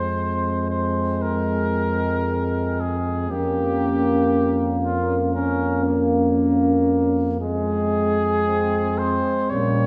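A warm cornet with light vibrato carries the melody up front in this yearning, solemn, hymn-like classical passage for brass band, played with rubato, while a dark, smooth-topped French horn section sings a second line in the background. A mellow, soft-attacked tuba anchors the bass up front beneath a euphonium accompaniment, and a clear, close-miked trombone joins in the background at 1.2 s. The band sits in a wet recital hall, heard from further back in the room, in a short passage cut from a longer piece.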